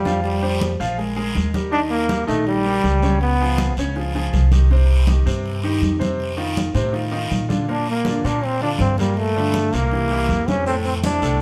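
Danceable and driving, this 161 BPM salsa excerpt puts a brilliant, punchy trombone up front with a vibrato-laden melody heard in two phrases, at 0.0 and again from 7.7 seconds, over woody pizzicato upright bass on gut strings, a clear, intimate baby grand piano with audible action noise, bright, damped congas, and raspy, saturated guiro, while grainy, distant maracas join only at 10.7 seconds, all sharing one room's wet reverb across chords moving from Fsus2 to Fmaj7.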